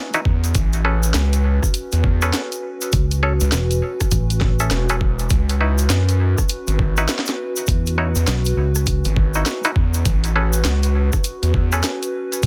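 Glitch hop at 101 BPM with a swung, swaggering gritty feel, this short excerpt rides C#m11 and Amaj9 chords over an overdriven, pitched-down electronic kick and a layered electronic kit with a cracking snare, hi-hat and rim click, plus a grainy tube shaker carrying analog delay. Up front, a saturated, aggressive synth bass with oscillator sync and a filter sweep leads the low end, joined at 2.9 seconds by a growly, amped fingered electric bass. Above, a twangy muted clav through a combo amp plays stabs with sidechain pumping and analog delay, while a warbling, nostalgic tape-like pad adds chorus, phaser and its own reverb to an echo-heavy, otherwise dry mix.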